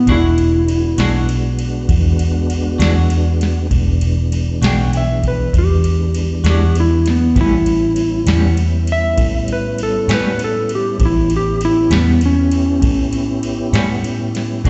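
Slow blues in a rollicking yet laid-back 12/8 groove, this live-sounding excerpt puts a dark, up-front lap steel slide melody with plate reverb and slapback echo over flute-like organ chords through a slow rotary speaker, a round foam-muted fingered bass, tremolo-tinged picked clean guitar, and an overdriven analog rhythm box with deep kick, crisp snare and ride, all heard through a venue PA in a recital-hall space, with the chords moving from E9 to A9 at 7.4 seconds and the lap steel dropping out at 13.4 seconds.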